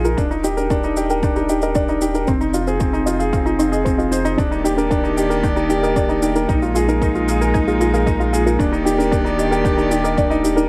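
Piano and strings electronica in Eb major at 114 BPM in a straight 4/4, tuned to A4 = 442 Hz, this tender, luminous fragment is cut from a longer piece. An intimate upright piano sits up front with a woody, clear riff, its action noise audible and a delay trailing its notes, while a dusty, warbling sawtooth pluck spins lo-fi arpeggios in the background through chorus, delay and sidechain pumping. Underneath, a round sine sub bass holds low notes with the same pumping motion, and an overdriven, layered electronic kick gives a deep pulse beside a gritty shaker, both placed in a small room. At 4.4 seconds a string quartet enters with floating, sul tasto sustained chords, pure and distant, one bowed player per line. The harmony moves through Ebmaj7, Fm7, Ebmaj7 and Bb7sus4 before resolving back to Ebmaj7, and a moderate concert hall reverb lends the mix a gentle sense of space.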